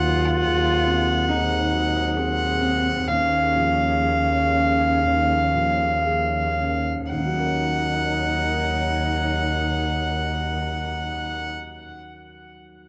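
A rich, floating violin carries a longing, fragile melody up front over a dark cello second line, a woody bowed double bass and a felt-muted upright piano in the background, while a warbly tape-like pad joins at 0.2 seconds in this slow, rubato neoclassical piece in Eb dorian, which slows over its first 7.1 seconds before settling on Ebm7, with the piano ringing on alone from 11.5 to 12.9 seconds in an intimate small room with a cassette tape haze.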